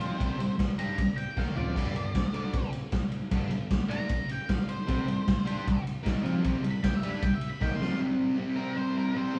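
An octave-fuzz lead guitar takes a dark, distorted solo from the opening until 8.0 seconds, picked across a range from Bb4 up to C6, and sitting slightly back in the mix. Beneath it, a bright, double-tracked fuzz guitar drives a picked riff up front over C5, G5 and back to C5 power chords. This is rowdy, swaggering garage rock for a duo or trio, played straight in 4/4 at 154 BPM. A raw acoustic drum kit with a punchy kick, medium-tuned snare and a rolled-off top works through crash, ride and splash cymbals and toms, with a fill at 1.4 seconds, before dropping out at 7.9 seconds and leaving the guitars to carry a brief closing section. The band sounds as if it is playing live in one small stone room, with moderate reverb and a cassette tape grain, in a passage cut from a longer piece.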